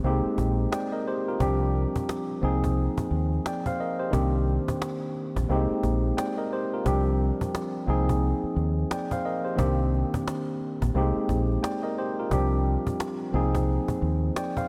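A swung boom-bap groove at 88 BPM in 4/4 drives this short, tough and dark hip-hop clip, cut from a longer piece and running about 14.7 seconds. A cajon carries the beat throughout, woody and close with soft hands and faint snares. Underneath, a deep dub fingered electric bass sits round and up front, dropping out at 14.3 seconds. A worn, slightly out-of-tune tine electric piano plays the chords with a mellow, cassette-tape color, filtered at both ends of its range. The harmony cycles through Bb13sus4, G7sus4/C, Ab69/C and Cm9, and the whole mix floats in a lush hall reverb that gives it a dreamy haze.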